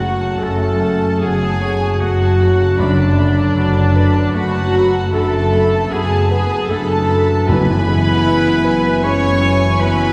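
Hopeful and tender, this cinematic excerpt in a rubato 3/4 at 77 BPM sets a floating, sul tasto violin melody over a second violin line, clear oboe, mellow clarinet, up-front rich violas, a vintage-toned grand piano, horn chords, a ringing thumb-plucked harp, and cello and double bass, with hard-mallet timpani entering at 2.8 s and stopping at 8.6 s, all heard from further back in a reverberant concert hall as the harmony moves from F#m7 through Bm7/F# to E/F#.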